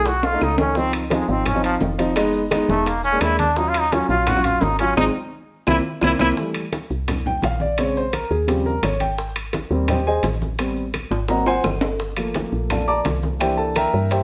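A lively, sunny stretch of Afro-Cuban jazz at 171 BPM in a straight 4/4, cut from a longer piece. A trombone with a straight mute takes the opening solo up front, its nasal, brilliant tone carrying vibrato and a vintage jazz flavour until it stops at 6.3 seconds, as drum fills and a band accent close out its phrase. From 6.4 seconds the grand piano, which has been comping underneath, steps forward for a warm, natural-sounding solo over chords such as Bbmaj13, Eb13 and Abmaj9 before settling on C7. A woody FM bass holds the low end with a soft, round, dark tone and a fast attack that decays. The percussion bed mixes ringing low-tuned congas played with hard hands, very quiet tight high-pitched bongos, metal-shell timbales, grainy maracas and claves set back in the mix, all under a moderate large-studio reverb.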